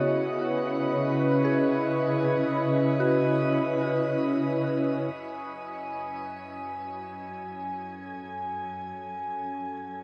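Reflective and melancholic, this free-time ambient fragment in F# dorian sets an up-front, detuned vintage sawtooth analog pad holding slow-attack chorused chords beneath gentle, pure FM synth-bell arpeggios that flicker through chorus, phaser and diffuse delay until 5.6 s, while a dark, woody bowed cello section with vibrato carries the bass in the background and an ethereal, glassy glass harmonica adds a high texture, all bathed in a long, wet shimmer reverb as the harmony moves from C#m7 to F#m at 5.1 s.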